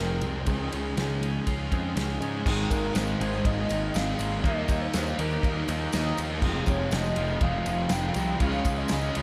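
A hazy, blissful shoegaze and dream pop excerpt in Ab major at 121 BPM opens with a pure, soft sine lead melody drenched in chorus and delay over twangy clean guitar arpeggios, a hollow-body overdriven guitar riff with reverse reverb, a thick fuzz guitar riff and a dark, punchy fuzz bass up front, joined at 0.2 seconds by a loose, tight-kicked indie drum kit, while a bright, double-tracked garage guitar with lush chorus enters at 2.5 seconds and a jingly tambourine follows in the background, all moving through Dbadd9, Abadd9, Ebadd9 and Fm7 chords in a dreamy mix soaked in hall reverb.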